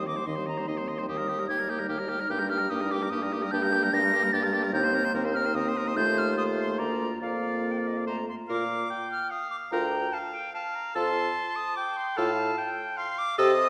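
Quick, restless and stormy classical-period movement for wind quintet in 3/4 at 147 BPM, settling into Bb major from 3.5 s, with a pure, crisp-attacked concert flute carrying the melody up front, a present oboe with light vibrato on the second line, a close-miked clarinet in the background and a soft-attacked French horn filling out the accompaniment, and a mellow, roomy bassoon holding the bass, set in the wet reverb of a concert hall.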